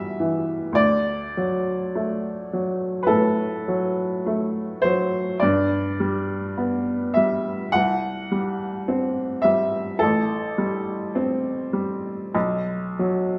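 Loose rubato phrasing stretches a slow 4/4 pulse at 52 BPM, giving this romantic classical nocturne a yearning, mournful drift. A solo upright piano carries the whole passage from 0.0 to 13.4 seconds, ranging from A1 to F#5, tuned slightly low with A4 at 438 Hz. Its tone is brilliant, woody and open, set up front in the mix. The harmony moves from Em to D at 0.8 seconds, then through G, C5 and Am7 before settling on B5 at 12.3 seconds. A large studio reverb with a 1.4-second decay bathes the instrument, and the overall production leans dark. The passage is cut from a longer piece.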